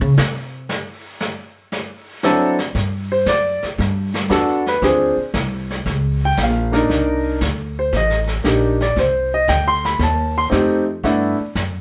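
The trio sounds like a band playing live together in one room, wrapped in a short, wet studio reverb. This sophisticated, relaxed jazz piano trio excerpt swings at 116 BPM in 4/4, and it is cut from a longer piece. A woody, thumpy upright bass opens alone, plucked on gut strings and sitting up front with a dark tone, before a vintage brush kit joins at 0.2 seconds with brushed snare, hi-hat, punchy kick and a rolled-off top. The concert grand piano carries the melody from 2.2 seconds, natural and up front with deep bass, as the harmony moves through chords such as Gmaj7, Cm9 and F9 and settles on G69 at 11.0 seconds. The piano sits loudest in the balance, with the bass beneath it and the drums further back.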